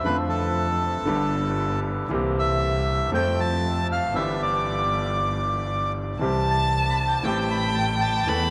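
A reedy, dark bandoneon carries the melody up front over bright grand piano and a bowed, boxy double bass with vibrato and portamento, in a passionate, playful, rubato tango excerpt in C major at 117 BPM, cut from a longer piece and set in a vast, echoing cathedral space, with a warm, expressive bowed violin adding a second line from 6.2 s.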